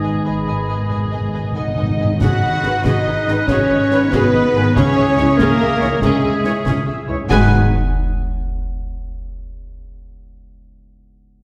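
Swashbuckling and determined, this heroic adventure film cue in 12/8 carries a rich, smooth violin-section melody over second lines from a mellow clarinet, an airy flute, a vintage-toned oboe and a focused second violin section, with expressive viola portamento, sustained chords from clear trombones and punchy French horns, dark trumpet stabs, ringing thumb-plucked harp arpeggios that continue alone until 9.9 s, a bowed bass of double basses and soft-attack cellos, close, dry timpani that open with a fill, and snare, clash cymbals and bass drum with bright cymbals joining at 2.2 s, heard from further back in a wet scoring-stage reverb.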